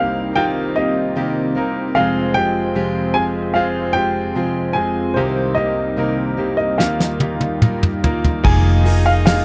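A longing, heartbroken pop ballad fragment opens with an intimate baby grand piano carrying the melody over a brilliant, deep-voiced concert grand, a smooth, warbling analog pad with subtle chorus and a fingerpicked steel-string acoustic guitar in the background, before a brushed drum kit with a fat snare arrives with a fill at 6.8 seconds, a round, punchy muted electric bass joins up front at 8.4 seconds, and a nasal, stopped French horn section adds a second line at 8.5 seconds, within a dark, small-room production with light reverb.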